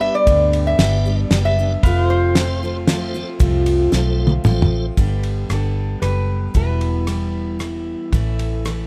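A lap resonator guitar, metallic and nasal under a steel bar and fingerpicks, carries a slide solo across this heartfelt, sunny honky-tonk and classic country excerpt in a straight 3/4 at 114 BPM in G major, moving over G, F, Em and A. A bright, jumbo-bodied picked acoustic guitar and a round, foam-muted vintage electric bass run throughout, while a cloth-damped drum kit with a fat snare and dark cymbals sits up front from 0.3 seconds and plays a fill just before the second section at 5.0 seconds. For the first five seconds, a piping tonewheel organ with key click, light overdrive, chorus vibrato and slow rotary speaker sounds alongside a clean, compressed pedal steel holding sustained chords in the background, all captured with close, detailed microphones and little reverb.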